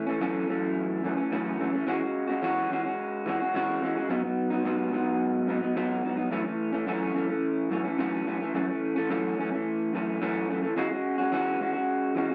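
A lone electric guitar played through a small old amp opens this lonely, wistful indie pop fragment at 108 BPM in a straight 4/4, its fingered tone dark, slightly broken-up and lo-fi, with a subtle chorus and vibrato effect. Sitting up front and compressed, it moves through F#m7, E69 and G#m7 in F# dorian before settling back on E69 near 10.8 seconds. A wet small-room reverb and a dusky, warm production wrap the brief 12.3-second excerpt.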